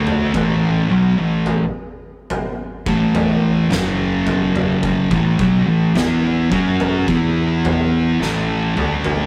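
Stoner and doom metal with a hypnotic, brooding mood: two thick, dark fuzz guitars sit up front playing a picked riff, a bright overdriven fingered bass growls in the background, and an oversized low-tuned acoustic kit with a fat snare, boomy kick and toms pumps in a stone room before a drum fill at 8.2 seconds, all caught in a rough rehearsal-room recording with light reverb.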